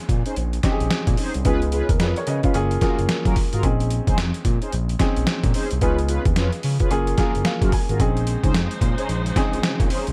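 Gritty, overdriven sampler-style boom bap drums with a thumpy kick and gated reverb sit up front in this confident, slick new jack swing R&B excerpt at 110 BPM in Bb minor with swung 16ths, alongside a smooth sawtooth synth bass, a natural-sounding baby grand piano that adds a fill at 7.2 seconds, dark, detuned synth brass stabs treated with chorus and phaser, and a distant bowed string section that enters at 8.0 seconds on sustained chords.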